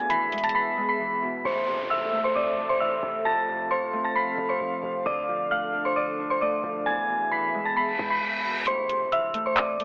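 Menacing and brooding, this half-time trap excerpt at 133 BPM in A harmonic minor sets an eerie, warbling FM synth bell melody up front over a ringing fingerpicked Celtic harp, a breathy ring-modulated pad, a punchy sine 808-style bass with transformer saturation, brief trap drums with bright hi-hats and handclaps that return at 8.7 s as an impact lands, and a downlifter and reverse cymbal, all in a dry, gritty telephone-like sound.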